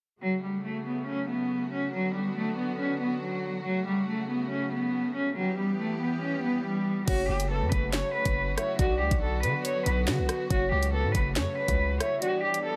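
A rich, bowed solo cello with vibrato carries the melody up front over veiled, con sordino strings holding sustained chords from 0.2 s, until at 7.1 s this menacing, cold half-time drill excerpt at 140 BPM in F# phrygian opens up with a knocking kick, sharp snare, bright hats and crash from the electronic drum kit, a heavy distorted 808-style bass, and a round, octave-layered synth lead with chorus, tremolo and delay adding a second line over the F#m, Bm and Em chords in a light reverb, before the kick drops out at 12.2 s.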